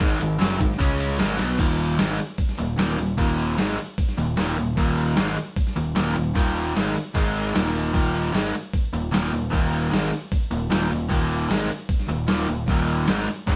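A straight 4/4 hard rock drive at 152 BPM comes from a gritty, pitched-down, sampler-style drum kit, compressed and re-recorded in a large room, with a thumpy kick, medium-tuned snare, hi-hat, ride and crash up front and a drum fill at 1.4 s. Over it, a biting overdriven guitar sits forward while a dark, hollow-body semi-hollow guitar also plays a riff further back, both moving through Ab5, Db5 and Eb5 chords. A growling, punchy overdriven bass anchors the low end, and the energetic, swaggering band sounds as if playing live together in one room with moderate studio reverb in this clip cut from a longer piece.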